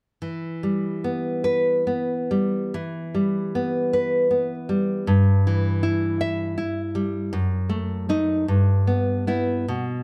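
Melancholic and intimate, this romantic piece for solo classical guitar moves in a flexible, rubato 6/8, cut from a longer work. The fingerpicked nylon-string guitar sits up front with a full-bodied, deep tone, and a new section begins at 2.8 seconds, with a brief diminished harmony at 7.3 seconds before returning home. Close, detailed microphones catch the playing, while a moderate recital-hall reverb lends a gentle sense of space.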